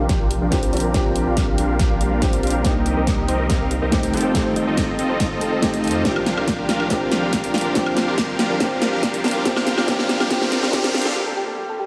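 Future bass in a half-time feel, playful and euphoric, this excerpt is one long build-up. Huge, detuned supersaw chords with delay ride up front through a filter sweep, pumping over a thick, saturated sub bass, while a shimmering, ethereal pad and a boxy felt-muted upright piano with audible action noise sit further back, and a very quiet, round pluck plays arpeggios. A punchy layered kick and a dance kit of hi-hat, woodblock and a massive snare drive a drum fill; a background riser enters at 8.8 s before a break at 11.2 s, all bathed in a dreamy plate reverb.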